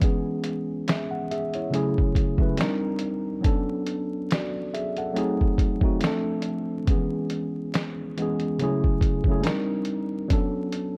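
Vinyl crackle and a light digital ambience frame this short cut from a longer nostalgic, reflective lo-fi hip hop piece at 70 BPM with a gentle 16th-note swing, where a worn, slightly out-of-tune tine electric piano with a cassette-tape tinge sits up front playing a drifting progression from C#m7 through F#m9/C#, Cm9, Bm9 and a tense G#7b9 while a compressed, muffled sampler-style kit with a thumpy kick, medium-tuned snare and hi-hat, re-recorded in a small room, plays alongside it throughout the 11 seconds.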